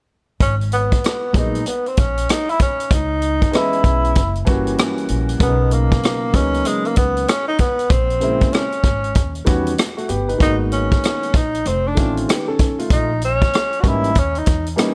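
A swung 96 BPM jazz-hop groove in G# minor, with a punchy kick, hi-hat and rim click from an up-front vintage drum kit with a rolled-off top, sets a cool, nocturnal mood as a woody pizzicato upright bass on steel strings plays beneath a breathy, mellow tenor saxophone solo with light vibrato and scooped notes, while an intimate upright piano with audible action noise and long sustain joins at 1.3 seconds, all wrapped in a small room ambience in this excerpt from a longer piece.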